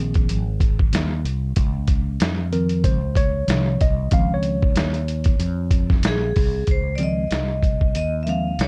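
Smooth and warm, this short jazz-hop cut rides a swung 94 BPM groove in Db major, opening on a Dbmaj9 chord. A worn, slightly out-of-tune tine electric piano with plate reverb solos through the first 6.7 seconds, backed by a round, dark fretless bass and a compressed, muffled, pitched-down sampler-style kit with a thumpy kick sitting up front. At 6.1 seconds, a bright, ringing vibraphone played with hard mallets enters, treated with plate reverb and tape echo, in a dark mix with light reverb.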